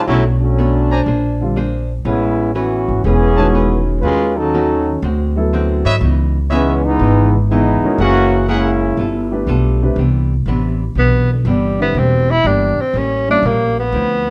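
Swinging and joyful, this jazz excerpt opens with a bright, up-front trombone section soloing over smooth-topped trumpet stabs, a dark, clean hollow-body electric guitar, a thumpy gut-string upright bass and a natural-sounding grand piano entering at 1.4 seconds, before a vibrato-rich vintage tenor saxophone with plate reverb takes the lead at 11.0 seconds in a dark, warm club-room mix.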